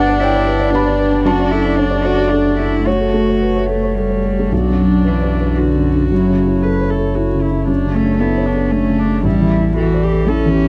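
Neoclassical piano and strings in B minor, tuned slightly low to A4 = 438 Hz, this short passage from a longer piece moves at 114 BPM in a rubato 3/4 with a longing, reflective mood. A felt-muted upright piano sits up front, dark and intimate with audible action noise. A single cello carries the second line while one viola adds accompaniment, both bowed sul tasto with light vibrato and soft attacks; a reedy, breathing pedal harmonium holds sustained chords in the background, and a round sine sub bass anchors the low end. The sound is dry and close, like a 1970s studio recording, and the harmony arrives on B minor at 4.5 seconds before resting on an A7sus4 at 9.2 seconds.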